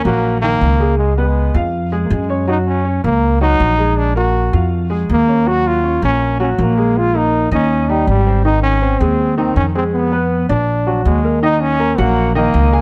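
A straight 4/4 pulse at 161 BPM drives this fiery, passionate Latin piece in Eb minor, cut from a longer performance, with a woody, thumpy pizzicato upright bass sitting up front from 0.1 seconds. A bright solo trombone carries the melody with light vibrato and a smooth top, also placed up front. A clear, worn baby grand piano accompanies with open, long-sustaining chords moving from Ebm7 through Gb69, Fdim and Bbaug7 back to Ebm7 at 11.4 seconds, all within a light reverb.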